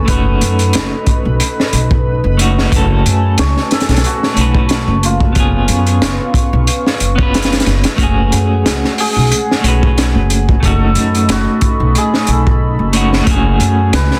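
A swung, crunchy breakbeat with a punchy kick and high-tuned snare drives this smoky, dark trip hop excerpt, as a thumpy, woody pizzicato upright bass sits up front, a clean electric guitar with tremolo and tape echo plays scooped accompaniment, a detuned sawtooth analog pad holds moody chords in the background, a bright, shimmering hammered santur carries the melody through 12-bit sampler grit and tape echo, and a very quiet reversed, granular texture swells dreamily until 8.0 seconds.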